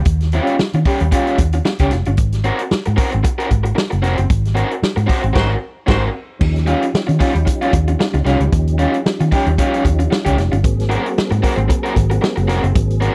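Strutting and funky, this short cut from a longer funk piece moves at 113 BPM in 4/4 with a light sixteenth-note swing, sitting in Eb mixolydian and alternating between Eb9 and Ab9 chords. A foam-muted electric bass, dark and round, anchors the groove up front alongside an acoustic drum kit with a punchy kick, medium-tuned snare, hi-hat and dark crash cymbals. A raw garage guitar, overdriven and picked with a lo-fi tube-saturated grit, fills in the accompaniment up front with them. A band accent hits from 4.3 seconds, and a mellow horn section with light vibrato adds a brief, punchy second line that sounds distant and roomy. At 6.4 seconds a mellow tonewheel organ enters in the background, holding sustained chords through a slow rotary speaker and chorus vibrato. The whole recording has a dry, close 1970s studio sound in a small room.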